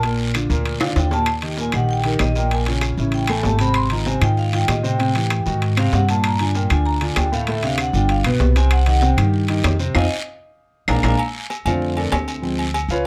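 Afro-Cuban jazz with a lively, danceable drive, this excerpt from a longer piece opens on a vibraphone solo played with medium hard mallets, its metallic, ringing tone colored by a slow motor vibrato and a boxy small-room sound. An intimate concert grand piano with audible action noise and deep bass sits up front in accompaniment, alongside a woody pizzicato upright bass on steel strings. Close, dry percussion fills out the groove: raspy guiro, ringing metal-shell timbales and agogo bells, and claves tucked in the background. Drum fills arrive near the start and again during a band accent, after which the piano takes a brief solo from 11.2 seconds. The harmony moves restlessly through minor sevenths and dominant chords, reaching a rootless Bbmaj9 before closing on a Dm7b5, all under a light reverb.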